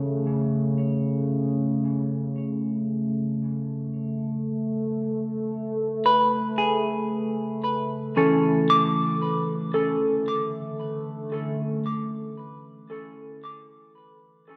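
Ambient and serene yet luminous at a slow 57 BPM, this short excerpt pairs clean, dark-toned arpeggios on a fingered semi-hollow electric guitar, colored by tape echo, with an evolving sawtooth and pulse-wave analog drone shimmering with chorus, both up front in a dreamy cassette-tinged mix soaked in plate reverb as the harmony moves from A/C# to Esus4 and settles on D5 at 9.7 seconds.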